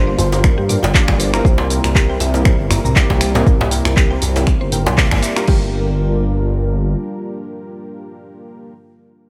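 Warm and spiritual in mood, this afro house cut moves at 119 BPM in 4/4 with a 16th-note swing, centred on G dorian and resting on a Gm7 chord from the opening moment. A punchy, layered electronic kick sits up front, re-recorded in a small room, while an afro-pop kit adds crash cymbal, finger snaps, handclaps, toms, shaker and warm hi-hats, joined in the background by a medium-tuned acoustic djembe with metal rattles, struck with hard hands. Beneath them, a deep, rumbling detuned saw bass beats with saturation, pumping against the kick until it drops out at 7.0 seconds. Analog keys with a round, mellow, sub-octave tone and a filter sweep play stabs with chorus and tape echo, while a woody, FM mallet-like pluck spins arpeggios in the background through 5.7 seconds. A moody, slow-blooming analog pad holds sustained chords with chorus and a long release. The passage opens as a drop that carries a band accent at 5.0 seconds before the music moves into a new section, all set in light reverb.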